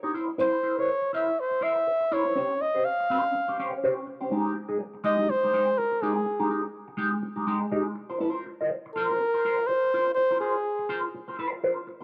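A mellow, jazz-style flugelhorn with light vibrato carries the up-front solo melody through analog delay from 0.4 to 11.1 seconds, over a dark, clean, fingered electric guitar played through wah and phaser, in a sultry, glamorous disco cut from a longer piece at 123 BPM with a swung sixteenth-note feel, light reverb and small room ambience.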